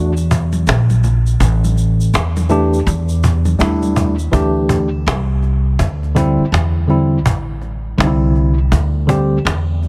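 A loose, swung sixteenth-note groove in 4/4 drives this mellow, nocturnal jazz-hop piece, carried by a woody, soft-handed cajon and a dark, thumpy pizzicato upright bass sitting up front. A worn, slightly out-of-tune tine electric piano heard through its built-in speakers plays the chords, while bright, vintage tube shaker and congas add texture until 4.3 seconds, when the harmony moves from A5 into D7sus4, Em7 and Am7. The recording has a heavily compressed, radio-like sound with light studio reverb, and it is cut from a longer piece.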